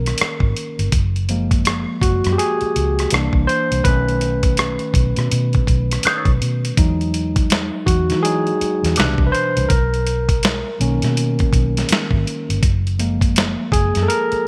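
Smooth and sensual, this short neo-soul and R&B passage, cut from a longer piece, moves at 82 BPM in 4/4 with a swung sixteenth-note feel. A barky, lightly overdriven tine electric piano sits up front through a combo amp and takes the lead for the full length, its bright tone carrying chords such as Bmaj7, F#maj9 and Emaj9. Underneath, a foam-muted fingered electric bass gives a dark, round and punchy low end, while a dusty sampler-style kit of kick, snare, rim click and hi-hat sounds gritty and compressed, with a thumpy kick and a medium-tuned snare re-recorded in a large room. From 6.1 to 9.2 seconds, an electric guitar through a small old amp adds a brief second line, slightly broken-up and lo-fi, colored by wah and subtle chorus. The overall sound is dry and intimate, with little reverb.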